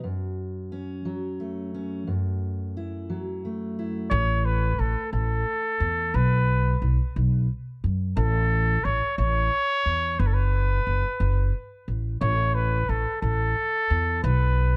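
A full-bodied, fingerpicked dreadnought acoustic guitar opens this anthemic indie folk excerpt in A major, a slow 6/8 at 59 BPM, before a mellow, vintage classical-style trumpet carrying tape echo and a woody, dark pizzicato upright bass enter together at 4.1 seconds, with the guitar dropping out at 6.1 seconds as the arrangement builds through a small, warm-sounding room over chords moving from F#m and F#m7 through A5, B5 and F#madd11.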